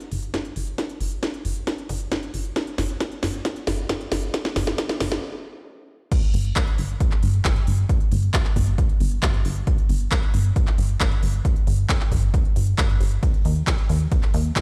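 Heard on a big sound system in a bare stone room yet dry on its own, this bittersweet, driving uplifting trance piece runs at 135 BPM in a straight 4/4. A layered, tape-warm techno kit of cracking snare, smooth hi-hats, handclaps, ride and crash carries a drum fill through the build-up, joined by a punchy analog kick sitting up front and a dark, funky filter-plucked bass of sawtooth and pulse tones with a moving notch and sidechain pumping. The music halts at 5.2 s before the drop lands at 6.1 s.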